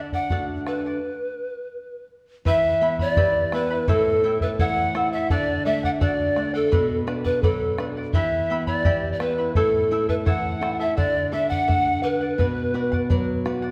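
A straight two-beat pulse in 2/4 drives this wistful, melancholic Andean folk excerpt. A round, close and dry bombo sits under a fingerpicked acoustic flamenco guitar and a shimmering charango whose double strings include some octave-doubled courses. After an opening D chord the group stops from 1.0 to 2.5 seconds, then returns on a cycle through Em, A7, D and Bm. Up front, a close-miked wooden pan flute carries the melody with an airy, expressive tone, vibrato and tongued notes. From 2.5 seconds a bamboo pan flute adds a second line in the background, breathy and mellow with a straight tone, soft attack, chiff and rolled-off highs, while a wet recital hall reverb gives the small ensemble a spacious glow.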